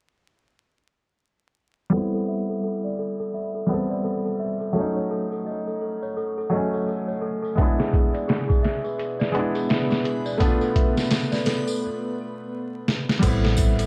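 A dark, cinematic trip hop excerpt opens at 1.9 s with a soft, felt-muted upright piano carrying harmonic tremolo, sampler grit and tape echo, alongside a delicate, bell-like celesta playing arpeggios and faint tambourine and triangle, both keyboards moving through a filter sweep over vinyl crackle, before gritty, pitched-down sampler drums with a thumpy kick arrive up front at 7.6 s, a moody, detuned ambient pad holds sustained chords, and a round, punchy dub bass lands on the closing Am7 at 13.2 s after a brief break and drum fill.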